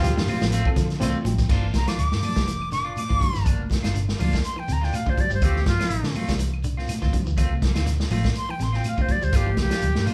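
Recorded as a band playing live in one room with a moderate large studio reverb, this funky, hypnotic afrobeat excerpt opens with a brief horn figure of clear trumpet over raspy baritone and barely audible tenor saxophone, while a barky, lightly overdriven reed electric piano plays a fill from 0.8 to 1.5 seconds. Underneath, a punchy, dark-cymbaled vintage drum kit sits up front with a round, foam-muted fingered bass, joined by a slightly broken-up, twangy guitar playing arpeggios, a clean picked guitar adding stabs with harmonic tremolo, distant high-tuned congas, a grainy shekere and very quiet woody claves. From 1.8 seconds a breathy, expressive silver concert flute takes an up-front solo over a swung groove that moves between Dm7 and Gm7.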